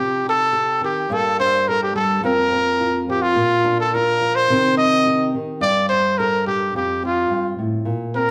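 Carefree and sunny, this highlife passage moves at 106 BPM in a straight 4/4, tuned to A4 = 441 Hz, and is cut from a longer piece. A breathy trumpet carries the melody throughout its 8.3 seconds, played solo in a jazz style with a soft attack and scooped notes, close-miked and sitting up front. Beneath it, a small-sounding nylon-string guitar provides fingerpicked acoustic accompaniment, also up front but a little quieter than the horn. The harmony moves through Cm, Gmadd9, Fsus4 and Bb, then returns to Cm before Gsus2 and a closing F5. The two players sound like a band playing live together in one room, bathed in a wet large-studio reverb that lends the brief passage an open, airy glow.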